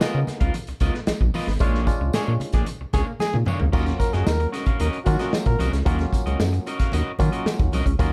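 Funk at 113 BPM in Eb minor with a driving, sly mood, this excerpt puts a rubbery square-wave bass and a punchy vintage drum kit up front, joined by a twangy electric guitar at the edge of break-up, stringy auto-wah clav stabs, very quiet damped congas and a distant, jingly tambourine, while a bright, close-miked trombone carries a second line from 2.1 to 5.7 seconds across a band accent and drum fill that lead into an Ebm7 at 3.7 seconds, all within a dark production and a dry room.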